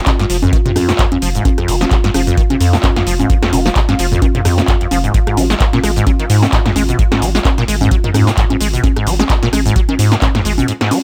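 Hypnotic and driving, this acid house excerpt swings its sixteenths while a squelchy, resonant sawtooth acid bass riff sits up front with ensemble chorus and delay, over a round, nasal analog bass that pumps against the sidechain. A dry analog drum machine, also up front, brings a punchy snare, metallic hi-hats, handclaps, rim clicks, congas, shaker and toms in a studio reverb, and a deep electronic kick carries the beat until it stops at 10.3 seconds. In the background, a moody, detuned analog pad holds sustained chords with chorus and sidechain pumping under a light reverb.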